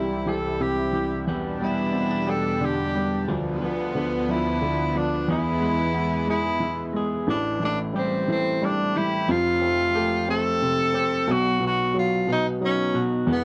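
Worn, warbling cassette tape with a moderate studio reverb colors this aching, dramatic pop excerpt in A minor at 60 BPM in 6/8, where a clear, jazz-style tenor saxophone carries the melody up front with vibrato, soft attacks and scooped notes over a woody, short-sustained upright piano, a lush, detuned sawtooth unison pad with chorus that holds bright chords until 7.3 s, and a slightly broken-up, twangy electric guitar playing fingered arpeggios in the background.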